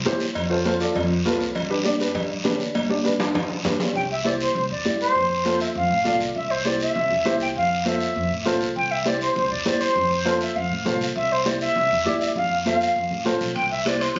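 An airy silver concert flute carries the melody of this sunny, festive cumbia in C major at 200 BPM, entering at 4.0 seconds with a tongued, vibrato-laced line that sits up front. Beneath it, a dark, worn upright piano plays mellow, boxy chords with short sustain and a slightly detuned edge, moving from F to G before settling into a steady alternation of C and F. A woody upright bass with gut strings adds a thumpy pizzicato low end, while raspy guiro and high-tuned congas, played with soft hands and kept in the background, keep the straight 4/4 groove moving. Ringing metal-shell timbales and cowbell drive the opening, playing a drum fill from 2.8 seconds before dropping out, then return at 13.6 seconds. The sound is of a phone capturing the band in a club, with moderate reverb and muffled highs, and the clip is cut from a longer piece.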